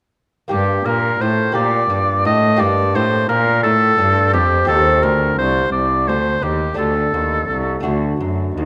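A warm, up-front oboe carries the melody of this solemn, flowing baroque-style sonata movement in G minor, its vibrato-touched line sitting between G4 and Eb5 with a punchy attack and a smooth top. Beneath it, a delicate fingerpicked lute on doubled gut strings, some strung in octaves, supplies the accompaniment from D2 up to G4, while a single bowed cello with a nasal, reedy gut-string tone anchors the bass between C2 and Bb2. The music moves in a straight 6/8 at 57 dotted-quarter beats per minute, with all three parts entering together at 0.5 seconds. The harmony rests on G minor before shifting to C minor at 4.7 seconds, then leans on a suspended D chord that resolves to D major at 7.9 seconds, after the oboe has dropped out at 7.8 seconds and the lute and cello continue to the end. A moderate recital-hall reverb surrounds this short excerpt cut from a longer piece.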